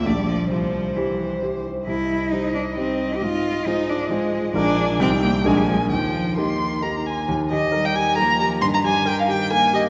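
Quick classical-period piano trio movement in Eb major at 134 BPM in 3/4, spirited and lively, where a focused, vibrato-laden bowed violin carries the melody over a rich, close cello second line and an open concert grand with deep bass and long sustain, all set in a wet concert hall reverb, in this passage cut from a longer piece that moves into a new section at 7.3 seconds and settles onto Eb harmony.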